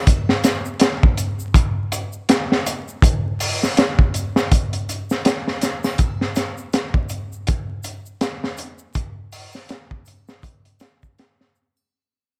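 Vinyl crackle and a small-room ambience frame this brooding, cinematic trip hop excerpt, where a gritty, saturated breakbeat kit with a punchy kick, a high-tuned snare, hi-hat and a rolled-off top sits up front in a swung 16th feel, while a close, dry egg shaker and triangle stay in the background, and everything fades out from 4.0 to 11.9 seconds.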